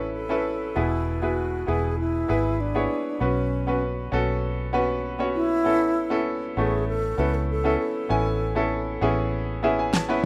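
Piano-driven pop with an anthemic, uplifting mood, this short excerpt from a longer piece sets a bright, woody upright piano against a round, foam-muted vintage electric bass while a breathy alto flute carries the melody with soft-attacked vibrato over chords moving from Aadd9 through E and Bsus2, before a piano fill at 9.3 seconds and a fat, layered electronic snare fill at 9.9 seconds close it out in a small-room home-demo sound.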